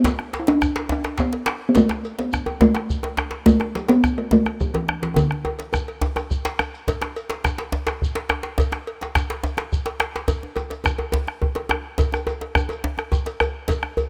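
A resonant talking drum carries the melody up front from the start, ranging from D3 to E4 before stopping at 5.7 seconds, as a festive, driving West African drum ensemble groove in 12/8 moves at 141 BPM. A deep, dark bombo sits close and dry at the front, joined by two djembes, one struck with hard hands and the other tight and cracking, while a metallic cowbell and a grainy, mellow shekere stay in the background. A drum fill arrives at 5.2 seconds, leading into a second section at 6.9 seconds, and the whole piece carries light reverb and small room ambience in a rough home demo mix, cut from a longer performance.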